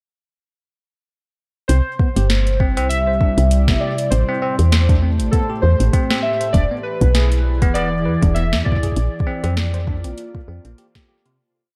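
A dark, lightly reverberant production frames this wistful, glitchy IDM piece at 99 BPM in C major, with swung 16ths driving a groove from 1.7 seconds that moves through C, Am7, E7 and Bbmaj7 before fading out from 8.2 seconds. An up-front woody FM bass with tube saturation plays a syncopated riff under an overdriven electronic kick in a broken pattern, while a booming analog drum machine adds a crisp snare and metallic closed hats in an ever-changing, glitched beat. Warbling lo-fi synth keys with chorus, phaser and 12-bit sampler grit carry a free, nostalgic melody over a glassy, ethereal FM pad that enters at 2.5 seconds and a bell-like tine electric piano whose delayed 11-step loop drifts against the bar.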